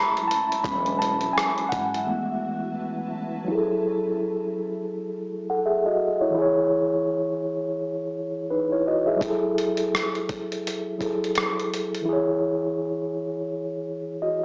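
A hazy, reflective lo-fi hip hop excerpt opens on a mellow tine electric piano, softened by cassette tape and a low-pass filter, over a blurred, detuned granular pad; a thumpy, compressed sampler-style drum kit and a dark, woody pizzicato upright bass join briefly before a break at 2.1 seconds, after which a filter sweep carries the piano alone until the drums return at 9.2 seconds, the whole excerpt sitting in a dry, small-speaker sound with light reverb.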